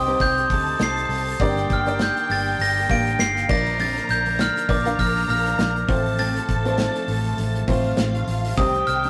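A lightly swung sixteenth-note groove in 4/4 carries this hopeful piano-driven pop clip, where a bell-like glockenspiel played with soft plastic mallets sits dry and up front with the melody over a clear, woody, slightly detuned upright piano, a lush bowed violin section on a second line, very quiet sul tasto string chords, and a dark, round, foam-muted electric bass, while a loose indie drum kit in a small pumping room enters at 0.1 s and a faint, full-bodied picked acoustic guitar riff arrives at 0.5 s, all captured as a rough rehearsal-room recording with short booth ambience.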